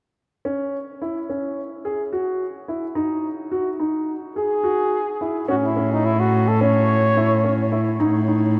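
A dark, boxy concert grand opens at 0.5 s with restless arpeggios in this shimmering chamber piece in 9/8, an excerpt from a longer work at 215 BPM in eighths, set in A lydian and moving from C#madd11 through D#madd11 toward A and a rootless B7/A. At 4.4 s a breathy, whispered flugelhorn takes up an intimate, jazz-style solo melody with vibrato and soft attack. At 5.5 s a single bowed cello, rich and pure, settles onto a floating sul tasto bass note, all within the long wash of a vast, echoing cathedral.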